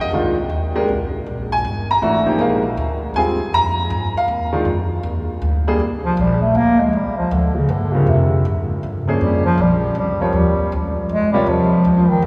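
A swinging jazz waltz in three carries this cool, searching modal excerpt. A clear, open concert grand piano with deep bass comps up front, and a woody, pizzicato upright bass on steel strings holds down the low end throughout. At 5.8 s the harmony shifts to a new modal centre, the piano briefly drops out, and a mellow, distant bass clarinet takes a vibrato-laced solo from 6.0 s before the piano rejoins at 7.9 s, all bathed in a long, wet cathedral reverb.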